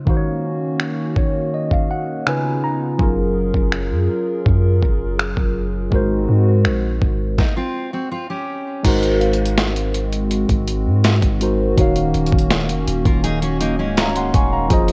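Contemporary R&B with a moody, longing feel, where a bright tine electric piano with phaser sits up front over a hollow, flute-like pad with chorus. A gritty, overdriven sampler-style drum kit with finger snaps and a thumpy kick carries the groove, and a deep, mellow 808-style bass enters at 3.0 seconds. As a stop begins at 7.4 seconds, a woody fingerpicked steel-string acoustic guitar arrives with arpeggios, and a delicate, very quiet celesta adds bell-like touches. The whole mix is coated in worn, warbling cassette-tape pitch drift.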